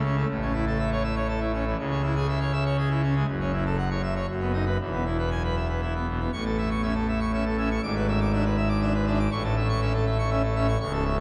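Set in a steady 3/4 at 120 BPM with a straight feel, this short classical organ toccata in A major moves with majestic, jubilant purpose, and it is cut from a longer piece. A solo pipe organ on full organ carries everything, its mixtures giving a brilliant, up-front sound with romantic voicing that spans from a deep C#1 up to D6. The harmony travels from A through C#m, F#m7 and B/F# to E, closing the opening section at 6.3 seconds, where a second section returns to A and passes through E7/G# before landing on A again at 9.3 seconds. The organ rings inside a cathedral acoustic with a long, wet reverb of 4.7 seconds that lets each chord bloom and hang in the space. The result feels grand and celebratory, a festive burst of sacred grandeur lasting just over eleven seconds.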